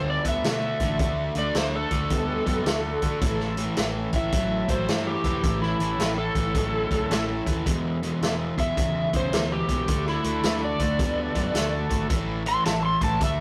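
A swung 4/4 groove at 108 BPM drives this raunchy blues rock and southern rock excerpt in A major, with a vintage drum kit entering at 0.2 s to set a punchy kick, medium-tuned snare and hi-hat up front in a natural small-room sound, under a round, foam-muted fingered bass. Overdrive colours a double-tracked, picked semi-hollow guitar playing the riff, a slide guitar carrying the melody through analog delay, and a gritty tonewheel organ holding thick sustained chords in the background through a slow rotary speaker. The chords move from D to A, E, D and back to A, and the rough rehearsal-room recording has moderate reverb and saturation.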